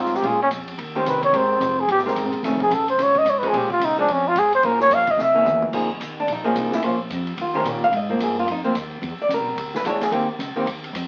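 Swinging and cool, this brief cut from a longer small-group jazz piece in the swing and bop vein sounds like a very old 78 rpm record, vinyl crackle and all, set in a moderate studio reverb. A dark, breathy trumpet carries the melody up front with light vibrato and scooped notes, soloing until 5.7 seconds, with the drums adding a fill over its final half second, while a clean, hollow-body archtop guitar picks chords just as far forward through changes like Bbm7, Abmaj9 and F7alt. Beneath them, a woody pizzicato upright bass sits low, and a vintage drum kit with dark cymbals, a tight kick and a gritty, saturated, rolled-off top keeps time to the end.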